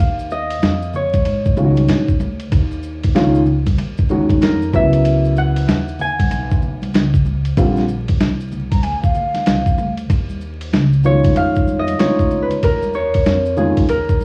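A ringing, thumb-plucked Celtic harp carries the melody through cassette tape and plate reverb, then takes a solo from 10.1 s in this nocturnal, smoky jazz-hop excerpt at 95 BPM with a swung 16th feel, set over a gritty, compressed sampler-style drum kit with a thumpy kick, woody pizzicato upright bass, a dark, worn grand piano with audible action noise entering at 1.6 s, soft-handed maracas and congas in the background, and a breathy, hollow concert flute that surfaces briefly at 8.7 s, with vinyl crackle across the home-cassette sound.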